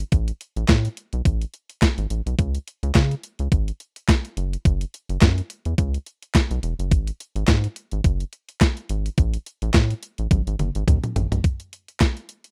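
A slick, late-night boogie funk groove rolls along at 106 BPM in 4/4 with a light sixteenth-note swing, set in C# minor and cut from a longer piece. An up-front, sampler-style digital drum machine supplies a thumpy kick, a medium-tuned snare, hi-hat, handclaps and toms, while a rubbery, hollow square-wave bass with a resonant filter pluck bounces darkly between E1 and C#3. A drum fill arrives at 10.3 seconds, the bass drops out at 11.4 seconds and the drums carry on alone to the end, all in a dry, rough home-demo mix.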